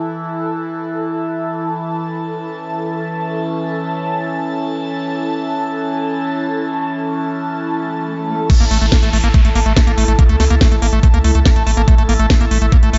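Lightly reverberant and rounded off in the top end, this excerpt of alien, driving psychedelic trance runs at 142 BPM in 4/4 and sits in A major. It opens on a sustained drone whose sawtooth and wave-folded tones carry moving, resonant overtones and a shifting notch, thickened by chorus and its own reverb, beside an airy, breathy pad of detuned waves and a noise layer, colored with chorus and phaser. Both slow-attack layers hold sustained chords and texture throughout, breathing with sidechain pumping, while a background swell and downlifter rises in from 7.9 seconds. At 8.5 seconds the drop arrives: a knocking, tape-warm electronic kick sits up front beside a layered kit of cracking snare, metallic hats and crash, re-recorded in a small room. A deep, round analog bass with a filter sweep anchors the low register, while a squelchy, gritty square-wave acid bass plays a resonant, plucked riff through cassette-tape grit and tape echo, pumping against the kick.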